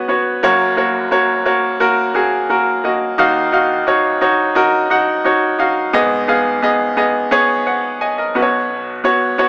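Anthemic and hopeful, this short pop excerpt in a straight 4/4 is carried entirely by a solo grand piano from 0.0 to 9.5 seconds. The piano sounds brilliant and polished, sitting up front in the mix with a short sustain that keeps each chord crisp. It spans a broad register from F#1 up to G#5, moving through F#, D#madd9, G#m and a closing Bsus2 that leaves the phrase open. A digital delay trails the piano, set inside a moderate studio reverb. The overall sound has a compact, small-speaker character, and the passage is clearly cut from a longer piece.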